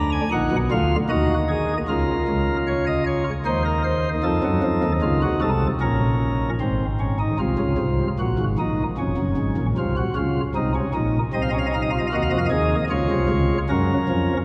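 In a straight triple metre, this lively yet stately baroque-style three-part fugue, cut from a longer piece, is played by a solo pipe organ whose sparkling flute stops, with their crisp chiff and baroque voicing, sit up front, spanning from deep bass notes to high treble and ringing through a resonant cathedral reverb.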